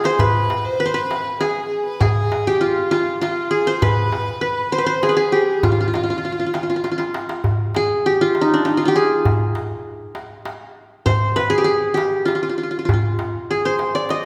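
A straight 3/4 pulse at 99 BPM is carried by a darbuka with a metal shell, its crisp, deep strokes sitting close, dry and up front, with drum fills at the very start, between 6.8 and 7.4 seconds, and again at the close. Over it, a plucked qanun leads the melody between D4 and Eb5, its triple strings giving a warm, bright-edged tone placed near the listener. A single bowed violin plays a smooth, even second line between F4 and C5 with clear vibrato, then drops out at 7.1 seconds and leaves the qanun and darbuka to carry the second section. This Arabic maqam ensemble piece, tuned to A4 = 438 Hz, has a hypnotic, longing mood. A wet recital-hall reverb frames the whole passage as if heard from further back in the room, and the music is cut from a longer piece.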